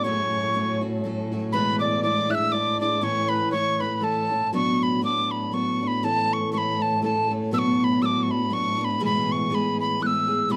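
Rollicking and cheerful, this Celtic folk excerpt moves at 120 BPM in a swung 3/4 in A major, with an up-front, airy metal tin whistle carrying the tongued, chiffy melody over picked steel-string acoustic guitar with warm fresh strings and a bowed cello holding a low drone with vibrato and portamento. A reedy, dark accordion plays a second line until 4.5 seconds, when the tune moves into a new section over chords such as Bm, A and E. The close, detailed sound sits in a small room with a faint mains hum beneath.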